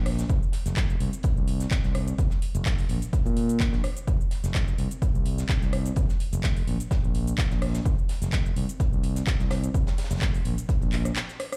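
A growly, overdriven fingered electric bass sits up front in this soulful, bittersweet piano house excerpt, its bright, amped tone pumping against the kick as it moves between F1 and Bb2 from the very start. The dry, punchy analog kick drum joins at 0.3 seconds and stays equally forward, driving a 127 BPM pulse in 4/4 with a gentle 16th-note swing. A layered electronic house kit adds handclaps, metallic hats, rim clicks and shaker, its overdriven sound re-recorded in a large room for a gritty edge. Further back, a tight acoustic funk kit contributes a high-tuned snare and filtered, pumping hi-hats with a small-room, mid-forward character. The overall sound is fairly dry yet carries the air of a big sound system in a bare space, and a brief break at 11.2 seconds closes this cut from a longer piece.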